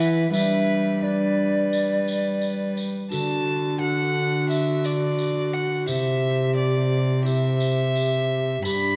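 In a straight 4/4 at 87 BPM, this courtly, festive renaissance-style consort dance in D mixolydian moves through G, D and C, opening a new section at 3.1 seconds in a portion cut from a longer piece. A reedy, gut-string violin carries the bowed melody over an airy, hollow tenor recorder with tongued chiff and vibrato on the second line, while a dark, nasal cello with light vibrato sits up front on the bass in period style. A ringing, fingerpicked concert harp accompanies from the background, a jingly, vintage tambourine joins at 0.3 seconds, and a wet recital hall reverb surrounds the ensemble.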